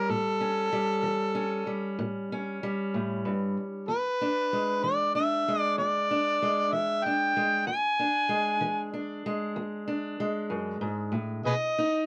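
Rollicking and soulful, this short excerpt of acoustic country blues moves at 63 BPM in a straight 12/8, set in E mixolydian. An overdriven, amplified harmonica carries the melody up front with a gritty edge, light vibrato, scooped notes, tongue slaps and a soft attack in a jazz-inflected solo style. A dark, boxy parlour steel-string guitar is fingerpicked beneath it, moving from A7 to E7 at 3.9 seconds and reaching B at 11.5 seconds, all caught by close, detailed microphones with light reverb.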